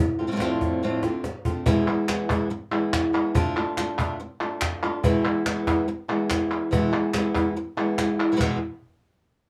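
A fingerpicked flamenco guitar opens this dramatic, intense flamenco fragment, sitting up front with a warm acoustic tone as it moves through F6, E, Dm and back to E before settling on E5. A snappy cajon with snares joins at 0.4 seconds, a brief drum fill follows at 1.0 seconds, and crisp palmas hand claps enter at 1.9 seconds. Light reverb gives the whole a small-room ambience.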